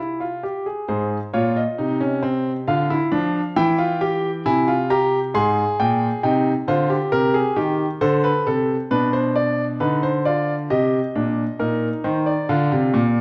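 A clear, intimate concert grand piano plays alone and up front in this stately, elegant baroque-style three-part fugue, moving at 67 BPM in 3/4 with a straight feel and harmony drifting from C through F minor, D minor, A-flat major and a diminished chord to C minor before closing on an E-flat fifth over B-flat. Its deep bass and audible action noise give the instrument a natural presence, and the part spans Ab2 to C6. A moderate recital hall reverb surrounds the piano, and the sound carries the worn, warbling pitch drift of old cassette tape; the recording is cut from a longer piece, with a new passage beginning at 11.6 seconds.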